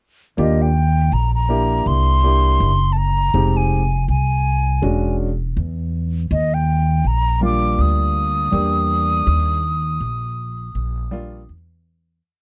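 Jazz-hop at 81 BPM in Eb major with a 16th-note swing, where a hollow, vibrato-tinged silver flute spins motif-based phrases over free, rootless comping from a dark grand piano and a thumpy, woody upright bass walking up front with chromatic approach notes, all captured as a dry, close 1970s-style studio recording dusted with vinyl crackle that fades out from 9.3 to 12.2 seconds.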